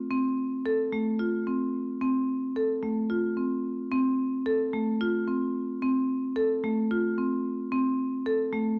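A solo marimba played with hard mallets opens at 0.1 s and carries this short excerpt from a longer contemporary instrumental piece, sounding by itself until 8.7 s. The music sits in F major and moves in 7/8 at 221 BPM counted in eighths, with a straight feel and a playful, shimmering mood. The marimba stays within a compact span from A3 to A4, its tone percussive yet smooth and dark, placed up front in the mix. A moderate recital hall reverb with a 1.6-second decay surrounds the notes. The overall production is dark and warm.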